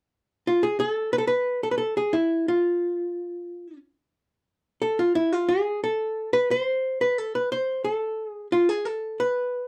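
Klezmer in a three-beat metre, this short excerpt carries a bittersweet yet festive mood at an unhurried pace. A single archtop guitar, miked and amplified, plays alone from 0.5 to 9.7 seconds, keeping to a narrow middle register. Its clean, picked electric tone is dark and hollow-bodied, sitting up front in the mix. A light reverb adds a touch of space to the guitar, while the overall sound stays dry and close, in the manner of a 1970s studio recording. Cut from a longer piece, the passage offers a brief, intimate glimpse of the solo line.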